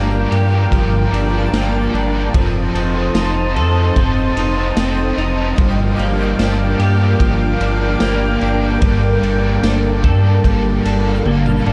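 A dark, hall-washed mix with a small-room edge carries this haunting, melancholic dream pop excerpt in straight 4/4, moving through Gm7, F7 and Gmadd9 chords. A slightly broken-up, arpeggiating electric guitar with ensemble chorus and delay sits over a deep, up-front sine sub bass with octave, while a double-tracked overdriven guitar with harmonic tremolo adds accompaniment and a lush, warbling, detuned unison pad holds sustained chords. A faint, twinkling granular texture with octave-up shimmer enters at 0.1 seconds, and a gritty, pumping garage drum kit joins at 0.3 seconds, closing with a fill at 11.3 seconds.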